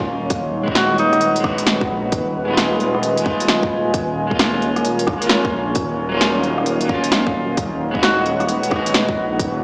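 Heard through a lush hall reverb and a big sound system in a bare room, with a small-speaker edge, this short cut from a longer future garage track moves at 132 BPM with a swung, nocturnal, rainy mood over chords such as Db9sus4/Eb and Ebm9. A warbling, lo-fi pad with chorus, sampler grit and sidechain pumping holds sustained chords, while a menacing, detuned saw bass swells underneath, a tight electronic kick thumps throughout, and an up-front garage kit adds cracking snare, rim click and crisp hats from 0.3 seconds. A clean, picked electric guitar with dub echo and pumping accompanies, a breathy alto saxophone with subtone and tape echo drifts in briefly at 0.8 seconds and again near the end, and a very quiet riser closes the cut at 9.6 seconds.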